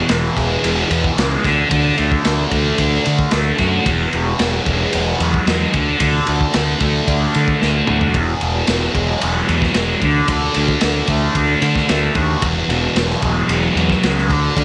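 Trippy and hazy, this psychedelic rock excerpt rides a straight 4/4 groove built on a thick, bright fuzz guitar riff, double-tracked and up front with distortion and phaser, moving between E and D chords. Beneath it, a fingered electric bass with overdriven fuzz grit sits forward in the mix, while a crunchy breakbeat drum kit brings a tight kick, medium-tuned snare, toms and dark ride cymbal with a saturated, rolled-off top. A brief drum fill arrives at 7.6 seconds, and light studio reverb gives the band a sense of room.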